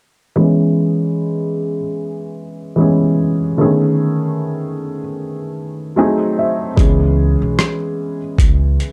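A worn, slightly detuned upright piano with audible action noise opens this reflective, nostalgic lo-fi hip hop excerpt at 0.4 s, moving through C#m7, B13 and G#7b9 in C# minor at 75 BPM with a swung sixteenth feel, its tone colored by cassette tape, a low-pass filter and a filter sweep. After a piano fill at 5.6 s, a growly pizzicato upright bass and a gritty, overdriven sampler-style kit with a thumpy kick, hi-hat and rim click enter together at 6.8 s as the harmony returns to C#m7. The dark, intimate production sits in a moderate studio ambience.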